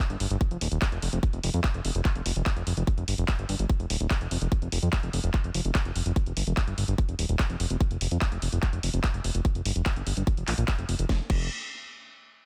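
Dense and heavily limited with little reverb, this psychedelic trance excerpt has a modern mastered sound. The mood is hypnotic and alien, carried by a straight four-four pulse. A tight, layered electronic kick sits up front. Behind it, a techno kit of handclaps, hi-hat, crash cymbal and a cracking snare adds a sense of larger space, its hats warm in tone. Underneath, a fat, detuned sawtooth bass with a fast attack and sustained notes ranges from Eb1 to F2, also placed up front. A filter sweep runs across the bass from the start until 11.1 seconds, shaping its thick tone and deepening the trance-like pull.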